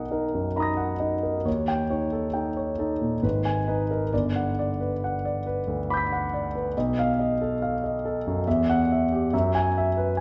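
Impressionist classical solo piano, dreamy and luminous, flows in a rubato three-beat lilt through lush extended harmonies, from Bmaj7 through G#madd9 and B7#11 to a closing F#9sus4 in this brief fragment of a longer piece. The concert grand sounds intimate and polished, sitting up front with deep bass, long sustain and audible action noise as it ranges from G1 to B6. A wet recital hall reverb surrounds it, and the top end is gently softened.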